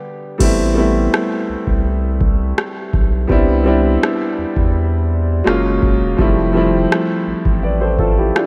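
An open, up-front baby grand piano accompanies this late-night contemporary R&B passage, cut from a longer piece, and it rings alone for the first 0.4 seconds before the groove arrives. Its chords carry a longing mood as the harmony moves from Am9 to Cmaj7, then briefly to F#maj7 before settling on Fmaj7. At 0.4 seconds a round, dark analog bass enters with sustained, sine-like notes in the low register. An electronic analog drum machine joins at the same moment, its deep kick booming with a tape-kissed character beneath rim clicks and crash cymbal. The straight 4/4 feel moves at an unhurried pace, and a lush hall reverb soaks the mix in a dreamy haze.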